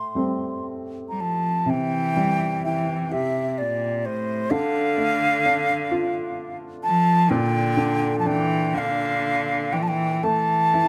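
Longing and haunting, this Celtic slow air unfolds in a loose, rubato 6/8 with uneven beats, its airy wooden flute carrying the melody up front with vibrato and a crisp attack. A woody, polished upright piano accompanies from the start, and a single bowed cello enters at 1.1 seconds with a focused, slightly boxy second line coloured by its own vibrato. The trio sounds like a band playing live in one room with light reverb, and the passage is cut from a longer piece.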